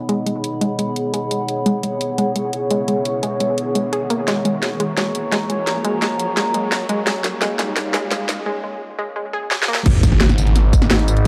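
Tense and futuristic, this dark, technical drum and bass cut from a longer piece runs at 172 BPM in G# minor, its build-up moving through G#m, C#m7, F#add9 and A#m before landing back on G#m. A deep, moody ambient pad holds sustained chords with chorus and reverb, joined by a warbling, nostalgic lo-fi pad with a mellow, wave-folded tone, both pumping against the sidechain. A lush, punchy unison pluck spins arpeggios through dub echo while a filter sweep runs across the build, and a background riser climbs from 1.6 seconds. The overdriven drum kit sits up front with a cracking snare, bright hats, tambourine and crash, playing fills around a short break. At 9.9 seconds the drop hits with an impact, a tight overdriven kick and a swirling, thick phased saw bass on a low G#, all wrapped in a dark production with moderate plate reverb.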